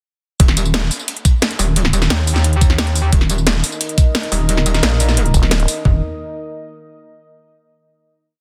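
From 0.4 s, this aggressive, brooding technical drum and bass piece at 176 BPM slams straight into its drop, with a saturated, metallic FM wobble bass up front that changes its wobble speed, a knocking kick and floor toms, a cracking snare with tambourine and metallic hats from a tape-warm, layered electronic kit, and a gritty, pitched-up looped breakbeat with edits sitting far back in a large room; a deep, detuned sawtooth pad with a sub octave and chorus swells in at 3.1 s, and a nasal, resonant vowel-sweep wobble bass cuts through at 5.3 s before the track closes on a final chord in a dense, heavily limited modern master.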